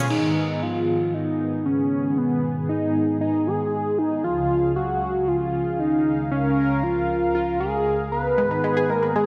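A thick, detuned unison lead carries the melody with vibrato and a cassette-tape tint, riding over a brassy analog pad whose sustained chorused, tremolo chords move from G#m to C# and back under a filter sweep in this nocturnal, nostalgic synthwave passage at 116 BPM in G# dorian. A round, wave-folded analog pluck adds brief chorused, delayed arpeggios at the very start and returns at 8.4 seconds. The bright 1980s-style digital production sits in a lush hall reverb, and the clip is cut from a longer piece.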